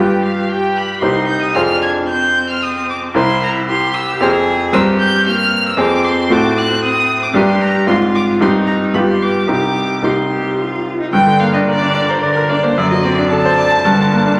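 Classical-period piano trio movement, stormy and dramatic at a quick 113 BPM in 3/4, where a smooth violin with vibrato carries the melody high above a focused, bowed cello second line, while a bright, brilliant baby grand piano plays an up-front accompaniment moving from C minor to G minor at 11.1 seconds, all set in the lush reverb of a recital hall with vinyl crackle, in this short passage cut from a longer piece.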